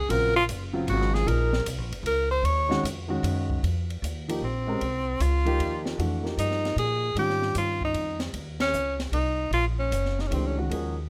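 A clear, punchy tenor saxophone opens this searching, hypnotic modal jazz excerpt with a forceful solo full of vibrato and scooped notes, over a mellow grand piano whose action noise is audible and a woody pizzicato upright bass that sits up front with the horn. Swinging in 3/4 at 153 BPM and tuned slightly low, the music moves from Ebm9 into a long F7sus2 passage at 3.6 seconds, with an acoustic drum kit of dark cymbals, a high-tuned snare and a boomy kick sitting low in the mix. The piano drops out at 8.3 seconds as the harmony settles on Ebm7, the band hits an accent just after, and the piano briefly returns near the end, all captured with close, detailed microphones and little reverb.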